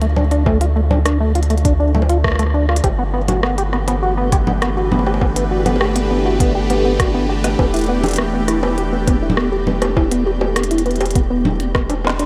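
Glitchy and intricate, this short IDM excerpt in a straight 4/4 feel floats in a dreamy mix soaked in huge ambient reverb. A rubbery, resonant acid bass carries the arpeggios in the mid register, its saturated sawtooth tone shaped by filter sweeps and treated with analog chorus and delay, while a round, up-front analog bass holds down the low end beneath it. An organic electronic drum kit of bongos, congas, crisp hi-hats, rim clicks and a woody snare runs through a delay, joined from 0.5 seconds by a soft electronic kick, both re-recorded in a small room. At 2.8 seconds a swirling, full-bodied phased pad enters with slow-attack sustained chords, moving from Gmaj7 to Em7 at 7.6 seconds. A very quiet flickering granular texture fades in at 3.8 seconds, and the passage closes with a drum fill and a full band accent.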